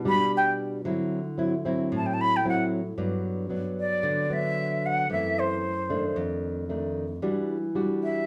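Breezy and sophisticated, this straight-feel bossa nova excerpt in G major at 113 BPM puts an airy, metallic jazz flute up front, its soft-attack, vibrato-rich melody taking a solo over the first 3.0 seconds, beside an equally forward nylon-string guitar whose warm, classical, thumb-plucked tone and finger squeak carry chords such as Em9, Gmaj7 and F#m7b5, set in a small room with a short, wet studio reverb.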